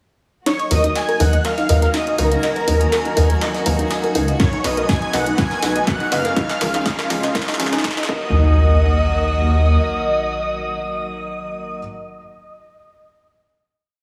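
A dark, rumbling detuned saw bass sits up front in this emotional, expansive progressive house piece at 122 BPM in E-flat minor, driving off-beat under a bright, thick unison lead doubled an octave higher by a smooth supersaw, with muted felt piano stabs, a tight background arpeggio synth, distant bowed chamber strings, programmed hats and snare, very quiet brushes, a faint twinkling granular shimmer, and a punchy four-on-the-floor kick arriving at 4.4 seconds while the build rises toward a final hit at 8.3 seconds, all through a heavily compressed radio-like sound with a hall reverb.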